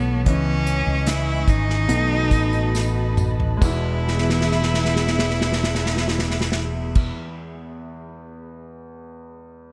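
A tender, hopeful pop ballad in E major at 67-76 BPM, this short excerpt features a clear, bowed cello melody with vibrato and analog delay, set over an intimate concert grand piano with audible action noise, a breathy pad in the background, and a round fretless electric bass. An acoustic drum kit played with bundle sticks, with dark cymbals and a tight kick, enters at 0.3 s and adds fills, while a jingly tambourine sits softly behind, and the tempo slows through the opening 3.6 s. The dreamy mix is soaked in plate reverb, and the piano rings on until 9.7 s.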